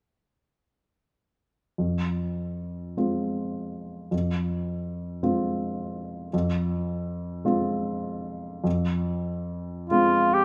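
A dark cor anglais, up front with a smooth top and vibrato, carries the melody in a solo classical voice, though it arrives only at 9.9 seconds, just before this fragment of a longer romantic piece breaks off. Until then, a baby grand piano plays alone from 1.8 seconds, setting out a sombre accompaniment in 6/8 that rests on an F minor chord. The piano's sound is mellow and intimate, with short sustain and audible action noise that lends it a natural, close presence. Uneven beats and free rubato give the music a yearning, elegiac feel. Detailed close microphones capture both instruments, while a moderate recital hall reverb adds space around them.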